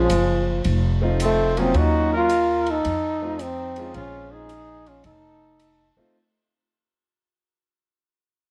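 A breathy, up-front trombone carries the melody with vibrato and scooped notes over a distant, roomy trumpet second line, a grand piano with deep bass, a woody, thumpy pizzicato upright bass and an airy drum kit with dark cymbals and a boomy kick, all swinging through a moody, smoky small-group jazz passage in light reverb that fades out across its 6.1 seconds.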